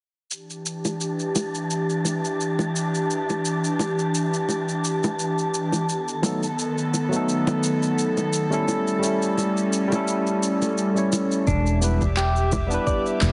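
A relaxed, wistful sunset chillout groove at 86 BPM in 4/4 with a lightly swung sixteenth feel and an E dorian flavour, built on overdriven electronic shaker and handclaps and close, dry, low-tuned bongos, while an airy, breathy, warbling pad sustains chords up front and a wind-like tuned noise texture hangs in the air until 11.5 seconds. A bright, barky tine electric piano, lightly overdriven with tape echo, joins the accompaniment at 6.2 seconds as the chords move from Em7 through B7 and A7. At 11.5 seconds the section turns back to Em7 as a dark, round fretless bass, a thumpy, gritty electronic kick and a slightly broken-up electric guitar arpeggiating through a filter sweep arrive, all inside a heavily compressed, radio-like sound with light reverb, a fragment cut from a longer piece.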